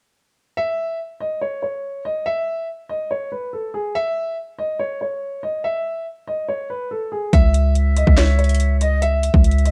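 Melancholic and eerie, this half-time trap hip hop excerpt opens with a dark, mellow grand piano playing the melody alone, touched by slapback echo. At 7.3 seconds a punchy 808-style bass, with a sine body and noise layer, arrives alongside an overdriven electronic trap kit, both up front: hard-clipped kick, sharp snare, metallic hats and handclaps roughened by vintage 12-bit sampler grit. At 7.8 seconds a quieter, airy flute with a straight, reedy tone and its own slapback echo adds a second line, set in a small room ambience.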